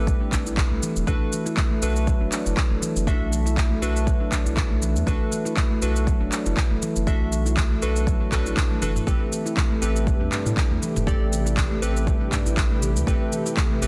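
Warm and earthy, this afro house excerpt moves at 120 BPM in 4/4 with a light swing on the sixteenths, built on Am9 and Bm7 chords. A deep, tape-warm electronic kick anchors the groove alongside an electronic afro-pop kit of handclaps, shaker and toms, which breaks into a brief drum fill at 8.7 seconds. Underneath, a round, dark analog bass with tube saturation sits from E1 to A2, pumping against the kick. Detuned, wave-folded analog keys play chorused stabs through a low-pass filter and tape echo, while a ringing, meditative handpan traces soft, mellow arpeggios with its own echo and filtering. At 9.5 seconds an ethereal, airy pad enters in the background with sustained chords, slow attack and built-in reverb, all set in light digital ambience under a dense, heavily limited modern master.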